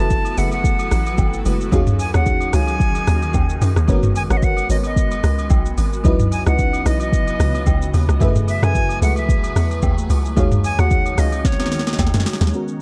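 A swung 111 BPM amapiano groove in 4/4 drives this late-night, deep excerpt, where a punchy, tight log drum bass and an up-front electronic kit with deep kick, sharp snare, crisp hats, rim click, shaker and toms push to a drum fill at 11.5 seconds, while a pure, vibrato-laden silver flute carries the melody with delay over a lush, warbling FM electric piano with chorus, a blurred granular cloud pad pumping in the background, soft round pluck stabs, and distant agogo bells and woodblock, all moving through minor eleventh chords from F#m11 in a dark, dry production with a faint mains hum.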